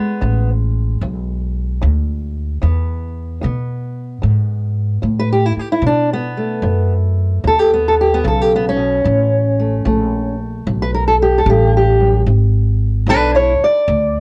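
Worn, warbling old tape colours this short cut from a longer piece, with a warbly pitch drift and light reverb around a close, up-front pair of players. It is rollicking, gritty acoustic country blues in E mixolydian at 75 BPM in 4/4, with a swung eighth-note feel. A fingerpicked old ladder-braced acoustic guitar carries the melody and solos throughout, its boxy, woody tone and old strings giving it a dark edge as it ranges from E2 up to D5. An upright bass enters at 0.2 seconds, plucked pizzicato on steel strings for a deep, dusky bottom end. The harmony moves from E7 to B7 at 5.8 seconds, then A7 at 9.1 seconds, before returning to E7 near the close.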